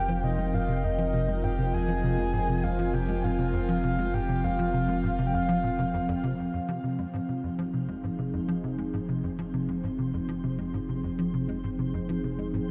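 Ambient, sequencer-driven space music in F minor at 100 BPM, this hypnotic, cosmic passage from a longer piece rests on an Fm7 chord: a tight, punchy sawtooth sequencer bass riff runs through a filter sweep and analog delay, a deep, round sine sub bass with tube saturation fades in from 6.5 seconds, an evolving, detuned resonant pad sustains up front with chorus, and a breathy, flute-like lead with vibrato, 12-bit sampler grit and shimmer reverb sings its melody until 6.2 seconds before a faint, twinkling granular texture fades in at 6.9 seconds, all set in a dark production with a huge, wet ambient reverb.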